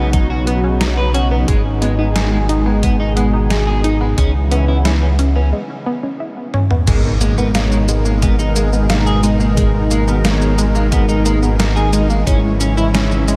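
A dreamy mix soaked in a huge ambient reverb gives this nocturnal, moody synthwave excerpt its hazy glow, moving at 89 BPM in a straight 4/4 in G# minor. A lush, thick and airy unison pad holds sustained chords with chorus, phaser and sidechain pumping, while a round, nasal analog pluck sits in the background with arpeggios run through chorus, phaser and analog delay. A glossy, up-front chorused synth bass anchors the low end beneath a bright, twangy electric guitar riff at the edge of break-up, bathed in lush chorus and analog delay. The drums pair a thumpy, tape-warm electronic kick with a detuned 8-bit digital drum machine of cabasa, crash, hi-hat, a medium-tuned snare and toms, both re-recorded in a large room. After a break at 5.5 seconds and a drum fill, the harmony shifts from Badd9, G#m and C#m7 to G#madd9 at 6.9 seconds, where a dark, full-bodied synth brass enters in the background with stabs carrying vibrato, chorus and delay. 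A very quiet electronic impact lands at 7.0 seconds.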